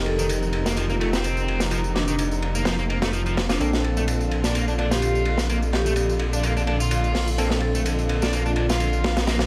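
A crunchy, saturated breakbeat kit with dark cymbals and a rolled-off top swings at 127 BPM in 4/4, joined by a tape-warm electronic tambourine, while a thick, beating detuned saw bass sits up front in this funky, playful breaks excerpt. An overdriven, picked electric guitar riff with 12-bit sampler grit and tape echo rides over the groove. In the background, a barky overdriven tine electric piano stabs through a filter sweep, a ringing vibraphone with medium hard mallets carries the melody with an old-record sound, and a clear bowed string section holds chords that move from F7sus4 to Bbmaj7 at 3.6 seconds.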